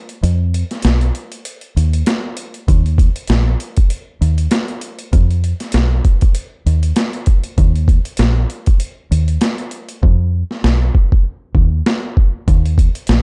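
Tough and dark, this boom-bap hip-hop excerpt rides a swung 98 BPM groove, opening on a break through the first 2.7 seconds. A gritty, compressed, pitched-down sampler-style kit with a thumpy kick and high-tuned snare sits up front with a big-room feel, its hi-hats dropping out from 10.0 to 12.5 seconds. Alongside it, also up front, a round, foam-muted fingered electric bass plays deep dub lines between Bb1 and F2, all wrapped in light reverb and a shadowy production.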